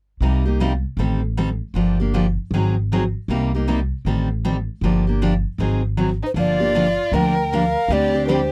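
A picked steel-string acoustic guitar and a pizzicato upright bass open together at 0.2 s in a fiery, virtuosic piece of acoustic string swing in the jazz manouche style, cut from a longer performance. The up-front dreadnought guitar, with fresh strings, accompanies through a repeating cycle of Cm7, Am7b5, Gm7 and Ab7. The woody, thumpy bass on steel strings holds the low end and sits equally close. At 6.2 s a single bowed violin enters as a second line, its soft attack, vibrato and portamento giving it an expressive, warm voice. Moments later, at 6.3 s, a clay alto ocarina takes the melody, breathy and bright with tongued notes, vibrato and lifted highs, as the harmony moves to Gm7 and then D7sus4. The sound is a dry, close 1970s-style studio recording with light reverb and a faint mains hum.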